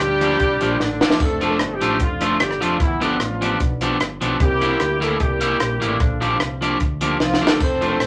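A cheerful, joyful ska excerpt opens with a tight horn section playing the melody in octave doubling, its punchy, vibrato-laced tone set up front. A round, fingered electric bass and a dry cocktail drum kit with a high-tuned snare, rim clicks and splash cymbal, touched by tape echo, join from the start. A twangy, slightly broken-up electric guitar adds accompaniment with its own tape echo from 0.2 seconds, while drum fills at 0.8 and 7.2 seconds punctuate a chord progression in a small, reverberant room.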